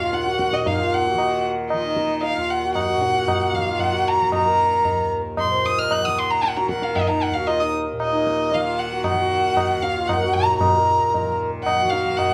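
Hindustani classical music in a longing, meditative mood at 114 BPM in 3/4, this excerpt sets an up-front, richly bowed solo violin with smooth vibrato carrying the melody over a reedy, close-miked pedal harmonium second line, a softly plucked, buzzing tanpura drone shimmering beneath, and high-tuned, ringing tabla with a vintage, band-limited tone entering at 0.1 seconds, all in a moderate recital hall reverb.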